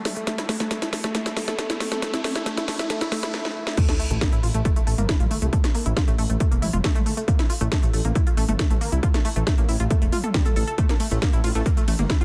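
Intense and industrial, this driving peak-time techno excerpt at 137 BPM opens on a build-up where a background riser and a cracking-snare drum fill with smooth, sidechain-pumped hats and toms play alongside a tight, chorused, tube-saturated sequenced synth riff, until a heavy, up-front kick lands at 3.8 seconds for the drop and a deep, rumbling detuned saw bass joins at 4.1 seconds, pumping beneath a dense, heavily limited master.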